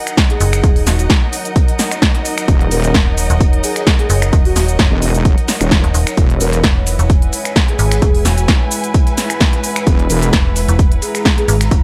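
A dry, up-front mix opens this bouncy, gritty bass house excerpt, where a punchy, tape-warm electronic kick and an overdriven big-room kit of crisp hats, snare, snaps and shaker drive a metallic FM bassline, a heavy, saturated wobble bass comes in at 2.5 s, a breathy flute-like lead floats in the background over a deep, moody pumping pad and veiled muted chamber strings, and a very quiet, dusty sampler-style kit adds grit underneath.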